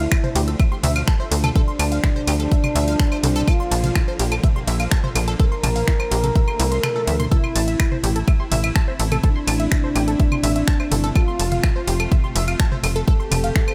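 A straight, punchy kick, tape-warm and up front, drives this dark, cinematic melodic techno excerpt alongside a house kit of claves, finger snaps, hi-hat, ride and toms, while a tight, nasal sequencer bass and a detuned sawtooth arpeggio synth with chorus and digital delay pump against it, a smooth, mellow lead with vibrato and delay sings over lush, bowed strings in the background through Dm, Bb, Am and F, and the kick drops out at 6.8 seconds for a drum fill at 7.1 seconds under a very quiet electronic swell.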